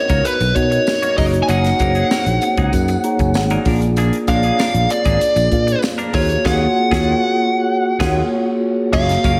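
Polished 1980s jazz-funk pop with an upbeat, breezy mood, this excerpt sets a fuzzy, up-front lead guitar melody over a mellow tine electric piano bathed in lush chorus (with a fill from 2.7 to 4.0 seconds), a twangy, compressed clean guitar riff with analog chorus, a growly, sustaining fretless bass, a crisp fusion kit with a high-tuned snare and punchy kick, and a very quiet, jingly tambourine, all set in a dreamy plate-reverb mix that moves through Bmaj7, F#69, A#7 and D#m11 before a band accent from 6.5 to 8.9 seconds.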